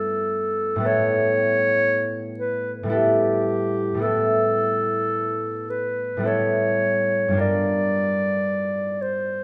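A clarinet sings a warm, classical-style solo melody up front in this pastoral, luminous impressionist duo, floating in a rubato three-four over a ringing, fingerpicked concert harp that moves from G69 to A9 before settling on Gm7 at 7.4 seconds, the pair bathed in the bloom of a reverberant recital hall in this short fragment of a longer piece.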